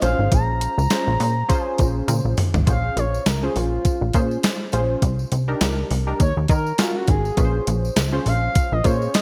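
Early-eighties boogie funk in Bb minor at 102 BPM with a swung sixteenth feel, this slick, late-night excerpt pairs a thumpy, up-front 8-bit drum machine soaked in gated reverb and a plucky, wave-folded analog bass with a mellow, detuned polysynth comp under chorus, a jingly tambourine in the background and a smooth portamento lead with vibrato that takes a solo at 2.7 seconds, following a drum fill from 2.1 seconds, all set in a lush hall and bright digital production over Bbm9, Cm9 and Ebm9 chords.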